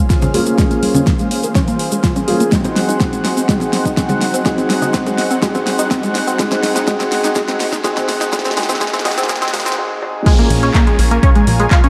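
A straight 4/4 pulse drives this progressive house excerpt, anchored by a punchy, up-front electronic kick and a layered pop kit of fat snare, handclaps, metallic hi-hats and crash cymbal, with a grainy egg shaker and close, dry congas and bongos sitting in the background. The mood is driving and emotional: a lush, airy unison pad holds sustained chords while a tight, nasal sequenced synth spins detuned arpeggios and a felt-muted upright piano adds soft, intimate stabs, all three pumping against the kick and moving through Bbm7 and Ab7. Filter sweeps on the pad, arpeggio and piano shape a long build-up, accompanied by a drum fill and a very quiet riser and downlifter. After a short break at 9.8 seconds, the drop lands at 10.3 seconds, and a plucky, wave-folded analog bass enters at 10.5 seconds with a funky, fast-attack tone. The production is dark and warm, set in a moderate, lush hall reverb that gives the layers a rich, enveloping depth.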